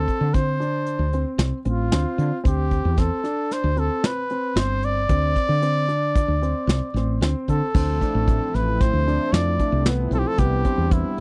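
A dry, close 1970s-style studio sound frames this intricate, driving progressive instrumental in D dorian, moving in a straight 5/4 at 113 BPM, where a warm, lightly vibrato trumpet carries the melody up front over dark, mellow baby grand arpeggios, a growly, round fretless bass with lush chorus, and a soft brush kit with tight kick and crash, until a shimmering, retro pulse-width pad with slow attack slips in at 7.7 seconds as the chords move from Dm7 toward Cmaj7.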